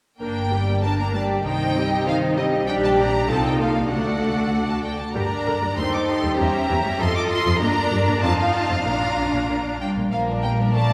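In a straight 2/4 pulse at 97 BPM, this urgent, stormy classical-period movement for string orchestra turns from G minor to Bb major at 5.1 s, with a lush violin section singing the high melody over a smooth, even second violin line, focused violas in accompaniment and an up-front double bass section, joined at 0.8 s by a clear cello section sitting in the background, the whole ensemble heard from further back in a wet concert hall.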